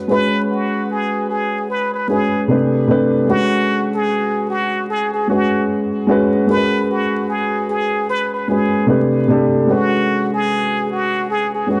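Vinyl crackle and a moderate spring reverb lend this short hip hop cut a dreamy, nostalgic haze, set at 75 BPM in 4/4 with a 60% swing on the sixteenths and tuned to A4 = 443 Hz. A dark upright piano with cassette-tape colouring enters at 0.0 s, sitting up front with a mellow, woody tone and long sustain as it moves through suspended chords such as C#7sus4, Csus2 and Bsus2. From 0.1 s a close-miked trumpet with a plunger mute carries a forceful, jazz-style solo melody, brilliant yet muffled, with wah-wah inflections, vibrato and a punchy attack.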